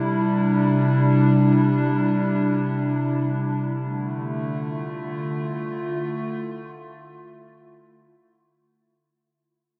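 In free time, a warbly tape-like pad plays alone as a short excerpt of ambient music, its detuned, wave-folded tone sustaining mellow and up front from C3 to F4 over C and then Dm at 3.7 seconds, with chorus, built-in reverb and delay, all set in a huge, wet reverb and fading out from 1.9 seconds, for a warm, weightless mood.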